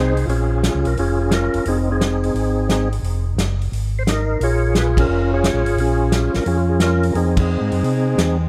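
Two tonewheel organs open together, one playing a percussive, lightly overdriven melody between C4 and Db5 through a slow rotary speaker, chorus vibrato and diffuse ambient delay, and the other laying down a mellow, round, dark bass line, before an acoustic soul drum kit with dark cymbals, a medium-tuned snare and a tight kick joins at 0.2 seconds from a distant, roomy booth, the trio swinging at 175 BPM in F minor through a smoky, soulful soul jazz passage cut from a longer piece that moves between Bbm7 and Fm7, with band accents at 4.9 and 7.3 seconds.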